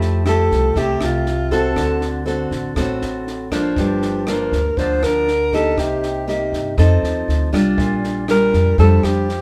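A straight 4/4 bossa nova pulse at 120 BPM in F major runs through this breezy, sophisticated excerpt, tuned slightly high at A4 = 441 Hz. A compact cocktail drum kit sits low in the mix, its dry sound built from a punchy kick, a high-tuned snare and rim clicks. Alongside it, a pizzicato upright bass with steel strings gives a woody, dark foundation, while an up-front nylon-string guitar, fingerpicked in classical style with fresh strings, supplies the warm accompaniment. Entering at 0.3 s, a close-miked alto saxophone takes the solo melody in a mellow jazz style, breathy and in subtone with vibrato. The band plays live in one room with moderate studio reverb, moving through Fmaj9, D7, Gm7, Cm7 and F7 before settling on Bb6.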